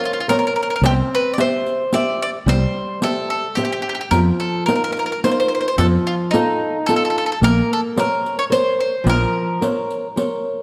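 A bright, double-strung bowl-back mandolin carries the melody from the first moment, set up front over a fingerpicked flamenco guitar and the soft-handed patter of a riq with dark, compressed, saturated jingles. This is an Italian folk serenade in 3/4 at 109 BPM, romantic and passionate in mood, moving through Bb harmonic minor with a straight feel. At 0.8 seconds a mellow fretless electric bass joins, its round, direct-amped tone sitting up front and low beneath the picked mandolin line. The harmony travels from Bbmadd9 through C, F7sus4 and F7 before settling back on Bbmadd9. The acoustic guitar's warm fingerpicking fills the middle of the texture, and a wet recital hall reverb gives the whole passage a spacious, resonant glow in this short cut from a longer piece.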